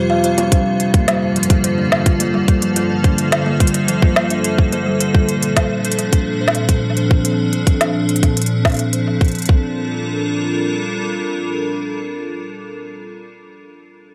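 An organic electronic kit of bongos, crisp hi-hat and a woody snare carrying tape echo opens this glitchy, eerie IDM cut, quickly anchored by a tight, up-front electronic kick, all with a gritty, re-recorded large-room character. Above them, an icy, crystalline glass pad holds sustained, chorused and reverberant chords with 12-bit sampler grit through 12.5 seconds. A dark, ringing kalimba plays echoing arpeggios until 4.9 seconds, and a faint, detuned pulsing texture sits in the background until the drums drop out near 9.5 seconds.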